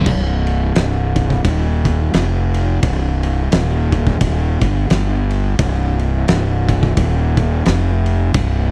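Stoner and doom metal in C minor at 87 BPM with a swung 4/4 feel, this sludgy, ominous fragment of a longer piece pairs a round, overdriven fuzz bass, fingered low between C1 and G1, against an oversized low-tuned drum kit whose muffled crash and ride, fat snare and punchy kick sound gritty and lo-fi, both up front in a dry, close 1970s-style studio sound for about 8 seconds.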